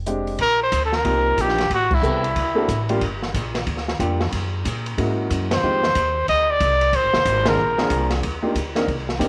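Swinging and relaxed, this short small-group swing and bop excerpt in Eb major moves at 184 BPM, with a woody, thumpy pizzicato upright bass on gut strings, a natural-toned baby grand piano comping, and a smooth, dark drum kit with dark cymbals and a boomy kick carrying the groove beneath a breathy, up-front trumpet that scoops into its phrases from 0.4 to 2.9 seconds and again from 5.5 seconds, with band accents and a lived-in cassette tape character and spring reverb giving the home recording a cozy small-room glow.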